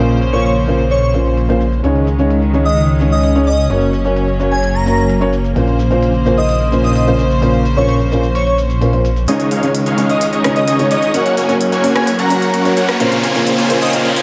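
A straight pulse drives this powerful, euphoric festival progressive house excerpt, where a soft felt-muted upright piano with vintage sampler grit and delay, reedy gut-string ensemble chords, a thick, menacing detuned saw bass and crisp overdriven big-room drums in a large room support an airy, dreamy chorused lead with vibrato and portamento, until a huge, bright supersaw riff arrives at 9.3 s for a filter-swept build-up joined by a background riser at 11.6 s.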